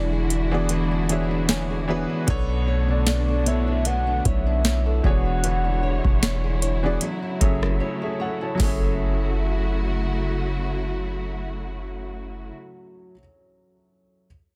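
A booming analog drum machine sits up front, its deep kick, crisp snare, metallic hats and rim clicks pushed through overdrive and re-recorded in a small room, running from 0.3 to 8.8 seconds with a break shortly before it stops. Beneath it, an 808-style bass with a sine body, a noise layer and a fast, decaying attack holds the low end, while a clear, slightly worn concert grand piano plays accompaniment and adds a fill early on. This contemporary R&B excerpt moves at 76 BPM in 4/4 with a light sixteenth-note swing, set in F# minor over chords of E13, Bm9 and F#m7, and its mood is longing and late-night. A velvety synth lead built from sawtooth, triangle and square waves with a sub octave carries a short melody through chorus, tremolo and delay until 6.6 seconds. A dark, woody string section sustains lush bowed chords from a distance with sidechain pumping, and a fingerpicked flamenco guitar with fresh strings and audible finger squeak plays arpeggios through delay. 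The whole is a dense, heavily limited modern master.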